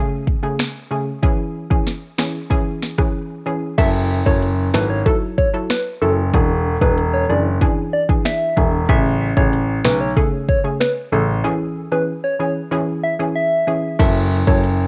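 Tough and bouncy, this dancehall cut opens with a hollow, detuned square-wave pluck and electronic drums with a deep kick and sharp snare, then at 3.8 seconds a round, warbling FM synth lead with tape echo and a polished grand piano playing the bass line join in over a dry, tape-warmed home cassette sound, with breaks at 3.1 and 11.4 seconds.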